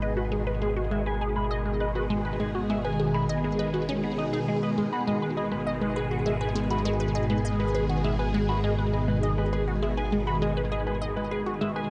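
Ambient, sequencer-driven space music in G# minor at 101 BPM, this hypnotic, mysterious excerpt holds a single G#m chord for about 12 seconds as a swirling, vintage string machine sustains chords through ensemble chorus and phaser, a squelchy, resonant blip pluck repeats a riff with phaser and delay, a dark, clean electric guitar plays fingered arpeggios through a low-pass filter and delay, and a fat analog bass holds a thick, up-front G#1, all bathed in a huge, dark reverb with an 8.3-second tail.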